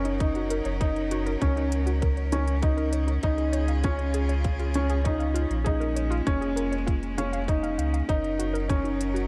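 Piano and strings electronica at 99 BPM in F# major, hopeful and luminous, in which a mellow, worn grand piano with audible action noise repeats a riff through digital delay and shimmer reverb over sustained chords from a woody, close string quartet with vibrato, while a round sine sub bass pumps beneath a tight, tape-warm electronic kick, crisp electronic hi-hats add detail, and a warbling, lo-fi detuned pluck plays arpeggios in the background through chorus and delay as the harmony moves from F#6 through C# and A#m7 back to F#6.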